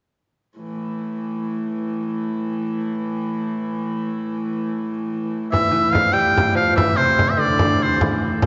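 Medieval dance in A minor at 97 BPM in a straight 6/8, ancient and driving, this excerpt opens on a rich, nasal, wheel-bowed hurdy-gurdy drone played up front from 0.6 seconds, joined at 5.5 seconds by an edgy folk-style shawm melody with vibrato, a delicate fingerpicked lute line with double nylon strings, and a deep, dry frame drum, all set in the long, wet reverb of a cathedral-like hall with a dark, rolled-off top.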